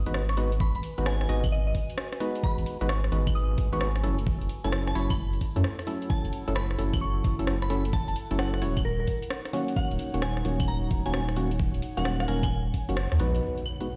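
A deep, saturated sub bass sits up front in this soulful, late-night two-step garage excerpt, its thick sine tone holding through a G#m7, F#m7 and D#m7 progression beneath hollow, mellow organ stabs with chorus and delay. An overdriven, knocking electronic kick and a garage kit of claves, rim clicks and metallic hi-hats swing with small room ambience, while a soft, pure FM bell melody drifts over a warbling, nostalgic tape-like pad that pumps in the background from 0.7 seconds. A band accent lands at 13.0 seconds before an electronic impact hits at 13.4 seconds, the whole mix washed in a stone-room reverb.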